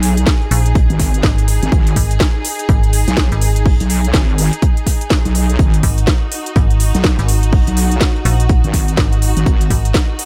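Bass house cut from a longer piece, aggressive and gritty, riding a swung sixteenth-note groove in four. Two basses sit up front: a heavy, wobbling, detuned square-and-sine unison bass, saturated and resonant with chorus and sidechain pumping, alongside a metallic, digital FM bass with a fast attack and decaying notes that enters at 0.5 seconds. A punchy, tape-warm electronic kick arrives at 0.3 seconds and drives the mix, while a layered garage kit adds a cracking snare and crisp hats heard in a large room. Beneath them, a very quiet jazz brush kit with a dark, high-tuned snare adds a smooth acoustic layer from a small room. A rich, close symphonic string section plays bowed with light vibrato and a biting intensity, pumping against the kick, all in a dry, upfront sound.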